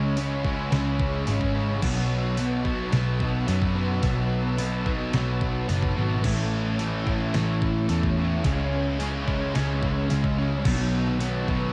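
The crunchy overdriven guitar is bright and double-tracked, picking a riff through cassette-tape grit in this melancholic, hazy shoegaze and dream pop excerpt at 109 BPM in a straight 4/4. Alongside it, a thick fuzz guitar plays a dark, distorted riff in the same low register with ensemble chorus. A vintage muted picked electric bass sits lowest, round and foam-muted, while a detuned 8-bit digital drum machine gives a thumpy kick, a fat snare, hi-hat and crash cymbal with a sampler-style, tape-softened feel. Far in the background, a string machine set to cellos holds sustained chords with a slow attack, its sawtooth tone mellowed by ensemble chorus and a sub octave. At 6.2 seconds a dark overdriven electric guitar joins with reverse reverb, reaching higher into the register as the chords move from C#m7 and B7sus4 to A. The sound is dry and lo-fi, like a home recording on cassette, with little reverb in the room.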